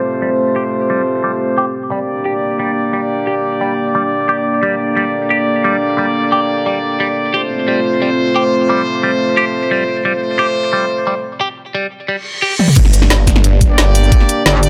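Dark and mechanical, this excerpt of technical drum and bass runs at 177 BPM in G minor, opening on a moody analog pad of sustained chords with chorus and sidechain pumping, moving from F to G minor, together with tight, up-front brass stabs with tape echo. A clean, picked semi-hollow electric guitar joins them, playing arpeggios through phaser, low-pass filter, tape echo and pumping, while filter sweeps shape the guitar and brass through the opening 12.8 seconds. A reverse cymbal and impact lead into a drum fill at 12.6 seconds, and the drop arrives at 12.8 seconds with an overdriven, knocking electronic kick and a layered kit of woody snare, bright hats, cabasa, crash and toms. A growling, detuned sawtooth bass with distortion and a moving notch snarls up front beneath the drop, and a metallic, wobbling FM bass with chorus appears briefly at 14.5 seconds. Light reverb and a low-pass filter frame the mix, with the brass stabs returning in the closing moments.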